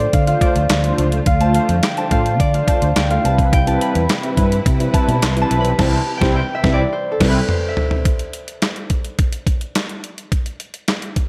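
A ringing, fingerpicked concert harp carries the melody in this slick, funky early-eighties boogie funk excerpt, soloing over a Dm7 to Cmaj7 groove until its last notes fade at 9.5 seconds. Beneath it, a mellow synth brass part adds brassy, sawtooth-edged accompaniment with a detuned shimmer, chorus, vibrato and a filter sweep. A muted studio string section holds lush, veiled chords con sordino in the background. A vintage fingered electric bass, foam-muted, round and punchy, anchors the low end. The detuned 8-bit drum machine sits up front with a thumpy kick, medium-tuned snare, hi-hat, handclaps, toms and crash cymbal, re-recorded in a large room; it joins the band on an accent at 5.8 seconds, plays a fill, then carries on past the harp's final notes to 11.3 seconds. Light reverb and digital ambience give the mix a polished sheen.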